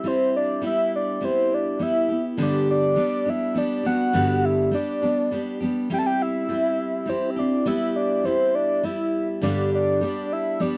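Nostalgic and gentle, this acoustic folk passage in three, cut from a longer piece, sets a soft, mellow synth lead with a round, octave-layered tone, chorus and vibrato over a full-bodied picked steel-string acoustic guitar, both up front from the first second to the end at 10.8 s. The harmony circles between C over G, E minor over G and G. The dry, close 1970s-style studio sound carries only a moderate booth ambience.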